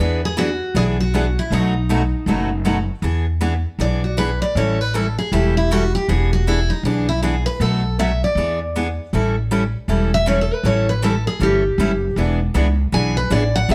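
A full-bodied dreadnought guitar carries the melody in this playful, lively gypsy-jazz excerpt at 158 BPM in E mixolydian, its bright fresh strings and audible finger squeak taking a solo from 3.0 seconds over swung seventh-chord changes. A picked concert guitar keeps up the accompaniment throughout, while a warm auditorium guitar adds a second rhythm part that drops out at 2.8 seconds and returns at 12.2. Underneath, a woody, thumpy pizzicato upright bass on gut strings sits up front, and light reverb gives the small ensemble a sense of room.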